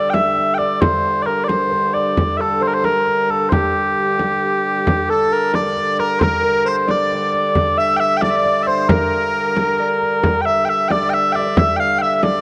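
A straight 6/8 pulse drives this mysterious medieval dance, with sweet, mellow small bagpipes up front carrying the melody over a smooth, even hurdy-gurdy drone, a ringing, fingerpicked concert harp in the background and a deep, close frame drum played with soft hands, while an edgy folk-style shawm adds a vibrato second line from 5.1 seconds, the whole set in a dark production with moderate spring reverb.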